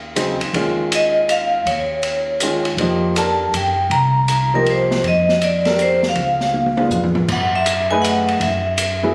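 Captured on a phone in a studio room with moderate reverb, this intense, cool modal jazz fragment in swung 3/4 at 160 BPM opens with thumpy, woody pizzicato upright bass, joined by an up-front, warm upright piano with long sustain and an open acoustic drum kit with dark cymbals, a high-tuned snare and boomy kick, while a bright, ringing vibraphone with fast motor vibrato and plate reverb carries the melody from 0.9 seconds over Eb9sus4 and F9sus4 harmony, before a drum fill at 6.5 seconds leads into a new section on F#m11 at 7.3 seconds.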